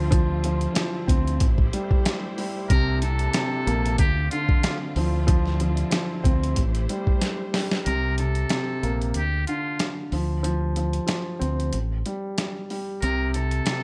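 A dark, mellow baby grand piano with a cassette-tape haze opens this moody boom-bap hip-hop excerpt, alongside a round, deep fingered electric bass and a lush, distant string section that drops out at 7.8 seconds. A gritty, compressed sampler-style kit with a thumpy kick and a large-room feel drives a swung groove, and at 2.7 seconds a buzzy, breathy trumpet with a metal mute takes an intimate, jazz-style solo. A drum fill leads into a break at 7.9 seconds, where the piano, bass, drums and trumpet carry on over shifting minor and suspended chords.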